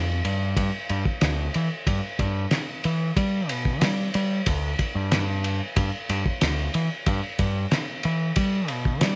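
Growling picked electric bass, overdriven and up front, carries this short psychedelic rock excerpt from the first moment, ranging from D2 to G3 in G mixolydian at 92 BPM in a straight 4/4 with a tuning of A4 = 437 Hz. A cloth-damped, thuddy acoustic drum kit joins at 0.2 seconds with a tight kick, fat snare and dark ride cymbal, its small-room sound muffled, gritty and lo-fi with a rolled-off top. The mood is kaleidoscopic and hypnotic, and the dry mix keeps both parts close.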